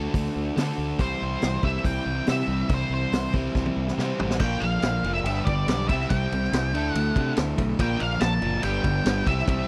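Confident and swaggering, this short classic rock excerpt at 142 BPM drives on two overdriven electric guitar riffs, one picked and compressed, the other sludgy, over a growling fingered bass and a gritty vintage drum kit with a high-tuned snare and dark cymbals, while from 1.0 seconds a dark octave-fuzz lead guitar with tape echo carries the melody, and a drum fill at 3.6 seconds leads into a new section over chords moving from D and C to Bb, G and Dsus2, all in a dry, close 1970s-style studio sound.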